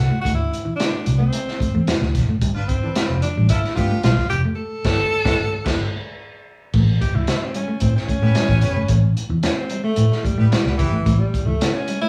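Funk in A mixolydian at 111 BPM, this playful excerpt moves in a straight 4/4 with a band sound that suggests live players sharing one room, set in a moderate large studio reverb. A dark, round, foam-muted fingered electric bass anchors the low end from the start, while a clean, twangy picked electric guitar plays a riff and a crunchy breakbeat kit sits up front with a saturated, gritty character, tight kick, medium-tuned snare and dark cymbals with a rolled-off top. A breathy tenor saxophone carries the melody with soft attacks, vibrato and scooped notes in a jazz style, and a punchy, smooth-topped horn section enters at 2.5 seconds with a pop-style second line tucked in the background. The chords shift from D9 to G9 and then to A9, and a band accent lands from 4.6 to 6.7 seconds. At 6.7 seconds the music moves into its second section as the tenor saxophone takes a solo through to the end.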